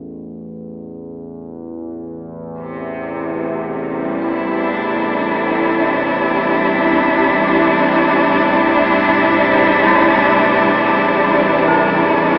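Ambient music in free time, ominous and vast, cut from a longer piece. An analog synth drone fades in from the start and runs to 12.4 seconds, low and warbling, its vintage sawtooth and pulse-wave tone shaped by pulse-width modulation, chorus, a slow attack and a long release. At 2.6 seconds a studio cello section enters up front with sustained bowed chords, its ensemble sound focused and smooth on top, with vibrato, as the harmony moves from A5 to Cadd9 over A. Near the end, at 9.9 seconds, a gamelan-type bronze metallophone sits in the background, playing ringing arpeggios with shimmering beats from its paired tuning, a boxy small-room character and tape echo. The whole mix is bathed in a cathedral reverb with a 5.8-second decay and filtered through an AM-radio sound.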